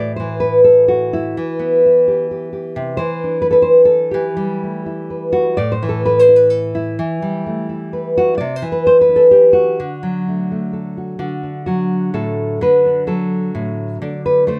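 Moderate studio reverb surrounds this wistful, haunting folk excerpt, where a dark, deep classical nylon-string guitar sits up front and plays solo in 3/4 at 128 BPM, its thumb-plucked tone moving through A5, Em and Cadd9 before reaching D and shifting into a new section at 11.2 seconds.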